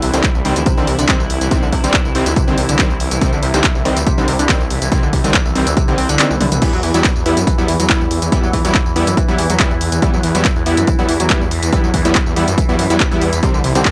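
A dry, gritty hardware recording with little reverb carries this industrial, intense slice of driving peak-time techno, cut from a longer track and anchored by a punchy, tape-warm electronic kick sitting up front beside an analog drum machine's crash, handclaps, hi-hat, tambourine and toms. A thick, menacing detuned saw bass and airy supersaw stabs with analog delay pump against the kick, while a screaming, guitar-like overdriven lead riff with vibrato, chorus and tape echo and a resonant drone of moving overtones, phaser and chorus sit in the background. The kick drops out from 6.2 to 6.6 seconds for a drum fill, and the harmony shifts from C minor to E minor as it returns.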